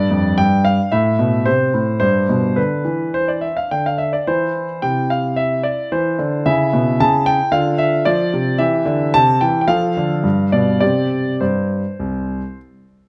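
A clear concert grand piano plays solo from the first moment, close and up front with a deep bass and long sustain, in this playful, graceful classical-period sonatina in C major at 109 BPM in 4/4, its uneven beats shaped with rubato as it moves between C2 and A5 within a moderate recital hall reverb, before the passage, cut from a longer piece, stops at 12.6 seconds.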